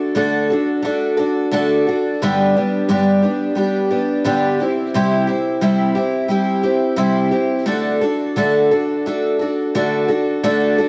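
Nostalgic and warm, this short rock excerpt at 88 BPM in D mixolydian features a lone picked twelve-string acoustic guitar, its shimmering, octave-doubled tone sitting up front with audible finger squeak and the character of cassette tape. The chords move from D to G at 2.2 seconds, then to C and back to D, all within a small room touched by light reverb that frames this home recording.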